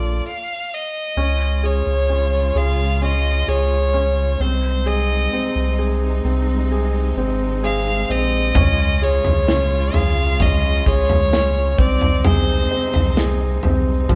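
A heartfelt, tender pop ballad at a slow 65 BPM, cut from a longer piece, where a bright, intense solo violin with vibrato carries the melody up front over a clear, intimate grand piano with audible action noise, lush symphonic strings with portamento, and a thick, saturated sub bass, all playing live in a stone room with moderate reverb. After a brief stop between 0.2 and 1.2 seconds, the harmony moves through Db and Ab/C, and at 8.6 seconds an acoustic drum kit enters with a punchy kick, a medium-tuned snare, toms and a pumping room sound.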